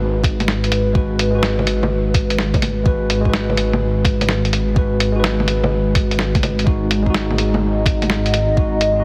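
This future garage excerpt opens in G# minor on a G#m7 chord, with a clean tine electric piano playing accompaniment with sidechain pumping and analog delay, while a warbling, tape-like pad holds dark, nostalgic chords in the background with chorus and its own reverb. Beneath them, a detuned saw bass sits up front on a low G#, its saturated, menacing tone evolving through a filter swell and pumping against the beat. At 0.2 seconds the drums arrive at 126 BPM in 4/4 with a heavy 16th-note swing: a soft, overdriven electronic kick joins a muffled, pitched-down sampler-style kit of bongos, hi-hat and a medium-tuned snare that sits close and tape-warm. Around 6.7 seconds the harmony shifts to D#m over a G# bass. The mood is rainy and melancholic, and the whole mix carries a light reverb and a heavily compressed, radio-like sheen.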